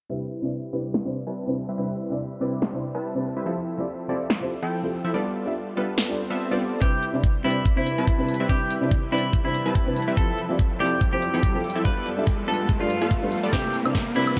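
A half-time future bass groove at 143 BPM with swung sixteenths in C major carries a euphoric, playful mood, as a felt-muted upright piano with audible action noise and a punchy, detuned supersaw stab both pump under sidechain from the start, a big-room dance kit with a punchy snare, crisp hats and woodblock enters at 0.9 seconds, and at 6.8 seconds a knocking electronic kick and a twangy clean electric guitar melody with tape echo arrive over background swells and risers, joined at 7.9 seconds by a shimmering, very quiet ambient pad, building toward a drum fill at 13.5 seconds.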